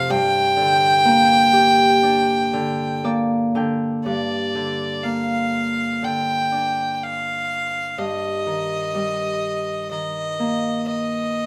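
A rich, nasal fiddle with light vibrato and an earthy, smooth top opens together with a ringing, fingerpicked Celtic harp, both up front in this longing, mournful Celtic folk excerpt in G minor at a rubato 62 BPM, where the harp adds a fill from 2.5 to 4.1 seconds and the harmony moves from Gm to Eb/G at 8.0 seconds, all captured as a live duo in one room with a moderate large-studio reverb.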